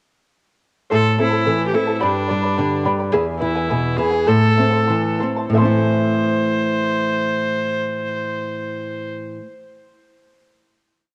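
Andean folk played by a small ensemble in A minor and 2/4, melancholic and earthy, moving at 86-108 BPM with a straight feel, slowing from 3.1 s before settling on a final chord at 5.6 s. A clear, airy bowed viola sits up front with a boxy, motif-based song melody, while a shimmering charango with double strings fingerpicks and strums open chord shapes, and a small, fingerpicked nylon-string guitar offers up-front bass notes and chord figures over an Am, G, E, Am progression. All three parts carry a cassette-tape character, and the whole piece has the light reverb and small-room ambience of a home recording.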